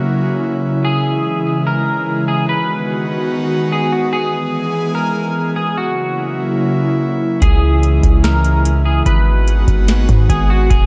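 An airy, breathy pad with chorus and sidechain pumping holds sustained chords in C# dorian from the start of this hazy, ethereal cloud-rap excerpt at 146 BPM in a half-time feel, while a slightly broken-up, twangy electric guitar sings a melody through analog chorus, low-pass filter and delay, and at 7.4 s a booming, overdriven analog drum machine with deep kick, crisp snare and metallic hats arrives with a deep, mellow 808-style bass, the dreamy mix soaked in lush hall reverb.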